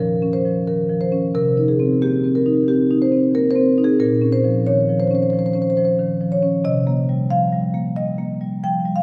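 The recording sits in a resonant church or concert hall, with a lush, wet reverb that lets each struck note bloom and linger for close to two seconds. Within that space, the solo marimba sounds close and up front, its tone boxy yet warm. This is a contemporary classical piece for solo marimba, warm and flowing in mood, in 4/4 at around 90 BPM and played with a free, rubato feel. Struck with medium hard mallets, the instrument ranges from a deep Bb2 up to a bright G5 across the nine-second passage. The harmony drifts between Bbmadd11, Cm7 at 1.3 seconds, Bbmadd9 at 4.0 seconds and Cm7 again at 6.7 seconds, giving a soft, suspended color to a fragment lifted from a longer work.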